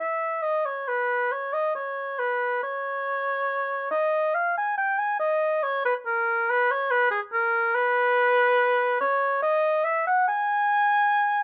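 Grave and flowing, this short passage from a longer classical piece is a baroque-style fantasia for unaccompanied oboe. The pulse sits around 70 BPM in 3/4, though the rubato feel lets the line breathe freely. A single oboe carries everything from 0.0 to 11.4 seconds, ranging from G#4 to G#5 with a warm, classical tone and light vibrato. The instrument sits up front yet has a distant, roomy quality, framed by light reverb and close, detailed microphones. Tuned to A4 = 438 Hz, the recording keeps attention on the solo voice.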